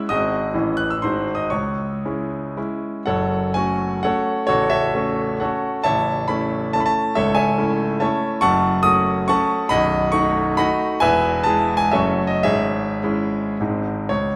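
Classical romantic piano music, this short excerpt from a longer piece is a triple-time dance in 3/4 built on dotted rhythms, moving between 100 and 148 BPM with a free, rubato feel. The mood is capricious and wistful, opening in C# minor before turning toward F# minor at 3.1 seconds and back to C# minor at 8.4 seconds. A solo concert grand piano carries everything from 0.0 to 14.4 seconds, spanning A0 to F#6 with a brilliant, polished tone, deep bass and an up-front presence. The harmony leans on G#7 and A before settling on C# minor, then passes through F# minor, A major, B7 and E before closing on C#m/G# and G#. A wet recital-hall reverb surrounds the instrument and lends the performance a sense of space.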